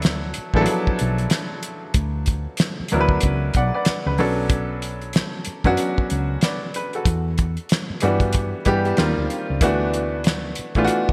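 A cloth-damped, thuddy drum kit with a fat snare, tight kick and hi-hat sits up front with gated reverb, setting a relaxed, swung neo-soul R&B groove at 94 BPM in D major, tuned to A4 = 438 Hz. A clear, short-sustain baby grand piano carries the accompaniment through D69, Bm9 and Em9, over a dark, round, woody fretless electric bass. A very quiet, slightly broken-up picked electric guitar slips in at 8.9 s on the Eb69 chord before the return to D69, all framed by a lush hall reverb and bright 1980s-style digital production in this warm excerpt from a longer piece.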